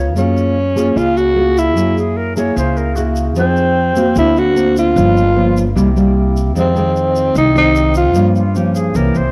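A growling tenor saxophone carries the raspy, subtoned melody with vibrato and scooped notes over dark thumb-plucked nylon-string guitar, woody pizzicato upright bass and a grainy tube shaker in this smooth, wistful bossa nova excerpt, while a breathy silver concert flute adds a second line at the start and returns at 8.4 seconds, all in a small room with light reverb and cassette tape character.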